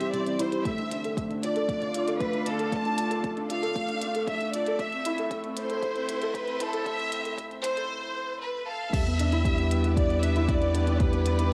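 An expressive, vibrato-rich chamber violin section carries the melody up front with tape echo in this moving, hypnotic piano-and-strings electronica piece, set over a soft, felt-muted upright piano riff with audible action noise, a lush, detuned sawtooth pad that pumps with chorus as a filter sweep builds, clicky hats and crash from a minimal click kit, and a deep, layered electronic kick from 0.7 seconds, until a brief break gives way to a drop at 8.9 seconds where a round sine sub bass enters, with cassette-tape haze on the strings, pad and piano and a wet spring reverb and faint mains hum around the home-recorded mix.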